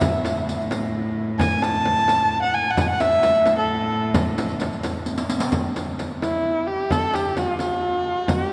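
Persian modal ensemble music in a passionate, warm mood, moving in a straight 6/8 at 87 BPM, with an up-front bowed kamancheh carrying the expressive melody across a range of E4 to A5 with vibrato, portamento and a smooth top, over a rich, reedy gut-string cello drone on A2 played in period style that stops at 5.6 s. A close, dry frame drum sits forward while a riq adds bright jingles and hard hands, and a drum fill at 5.1 s leads into a new section at 5.5 s. This short cut from a longer piece is bathed in a wet cathedral reverb of a church or concert hall.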